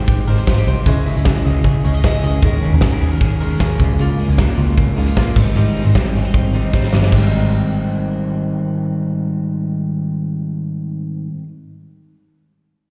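A big rock drum kit drives a straight 4/4 at 153 BPM, its punchy kick, fat snare and dark cymbals sitting up front in a bright stone room, with a fill from 6.7 to 7.1 seconds before the drums drop out at 7.2 seconds. Beneath it, a round, foam-muted vintage electric bass anchors a nostalgic, breezy stretch of jangly indie pop in Ab major, moving through Abmaj7, Dbmadd9, Eb7sus4 and Db6. A compressed, slightly broken-up electric guitar plays up-front arpeggios through digital delay and plate reverb, while a full-bodied jumbo steel-string acoustic guitar picks a dark accompaniment with slapback echo, all heard as a live gig through the venue's PA in a recital hall.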